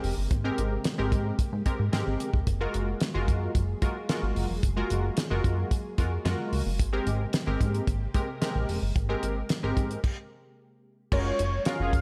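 Early-eighties boogie funk with a feel-good, smooth groove, this excerpt rides on a damped 70s drum kit with a fat snare and dark cymbals, a punchy, plucky analog bass, a detuned, chorused polysynth comp with slapback echo and a silky, very quiet string machine, all in a big arena sound with recital hall reverb, before a stop at 10.0 seconds gives way to a fat, vibrato-laden analog lead at 11.1 seconds and a brief touch of bold synth brass.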